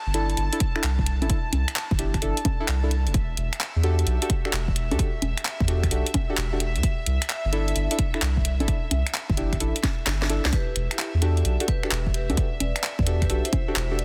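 A round, deep dub sub bass anchors this skippy, soulful two-step UK garage passage, joined by a punchy electronic kick and an up-front house kit of cracking snare, hi-hat, handclaps, finger snaps and congas. Mellow, nasal chord stabs with chorus and digital delay move between C69 and Em11 over a distant, floating violin section whose sustained chords pump against the sidechain. After a drum fill at 9.8 s, a bright, ringing vibraphone played with hard mallets enters with a melody at 10.5 s, all set in light reverb with a dense, heavily limited modern sound.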